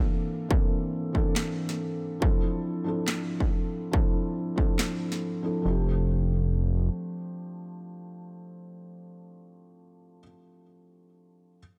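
A half-time future bass groove opens this lush, bright fragment, with a layered, distorted electronic kick carrying a tape-warmed edge up front from 0.5 s to 4.7 s, joined at 1.4 s by a sharp snare with handclaps, re-recorded in a small room and also up front until 5.2 s. A soft, muted upright piano with thick felt, audible action noise and a dark, intimate tone carries the extended chords from the start, pumping with sidechain and trailing delay over a digital ambience. At 5.6 s a fat, detuned sawtooth bass enters low with a filter sweep, fast attack and sustained, pumping body.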